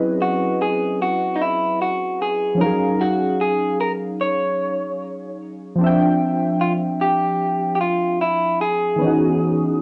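Lo-fi hip hop at 75 BPM with a lightly swung 16th feel, reflective and hazy, in which warbling, detuned synth keys with chorus, ring modulation and cassette-tape grit carry mellow chords from C#m11 through D#m11 and Dm11 back to C#m11 from the start, while a slightly broken-up electric guitar through a small old amp enters at 0.2 seconds with a picked, up-front melody, both parts softened by a low-pass filter and plate reverb in a wet room, in a clip cut from a longer piece.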